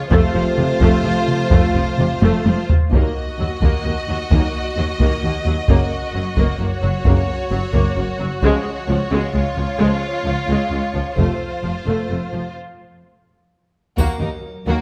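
A close, detailed recording sits in a moderate scoring-stage reverb, giving this heroic, relentless cinematic orchestral cue a polished, full-bodied presence. Over a brisk triple metre, solo taiko drums struck with heavy sticks drive the music from the start, standing out as the most prominent part and punctuating the opening with a fill from 2.2 to 2.9 seconds. Lush, bowed violins carry the melody with warm vibrato while a second, more distant violin line and a rich viola section fill in beneath, all smooth and even. Cellos and double basses anchor the low end in the background, and a mellow, punchy French horn section and a very quiet trombone section hold sustained chords until 11.3 seconds. After a break from 12.6 to 14.0 seconds, the horns return alongside a faint triangle with a dark shimmer as the harmony lands back on E-flat minor, the passage clearly cut from a longer piece.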